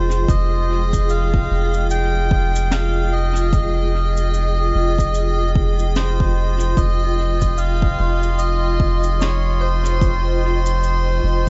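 A small room sound with its highs trimmed frames this spacious, meditative ambient dub excerpt at 74 BPM in F minor, swung on the sixteenths and resting on a single Fm9 chord. A reedy, breathy melodica carries the melody through dub echo over a blurred, evolving granular cloud pad and a round, up-front sub bass, while a brushed shaker and snare drum with dub echo and an overdriven, deep electronic kick carry the beat. At 7.8 seconds a glassy, chorused harmonics texture drifts in the background, and from 8.0 seconds a ringing vibraphone with hard mallets adds gritty, echoed arpeggios.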